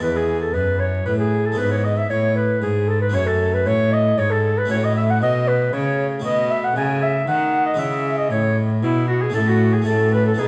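Classical baroque-style sonata movement in a flowing, dance-like triple metre, where a mellow, hollow silver concert flute carries the melody over a distant oboe second line, a full, plucked harpsichord accompaniment and a rich, bowed cello bass with gut-string tone, all set in a moderate recital hall reverb with dark production and vinyl crackle across this short cut from a longer piece.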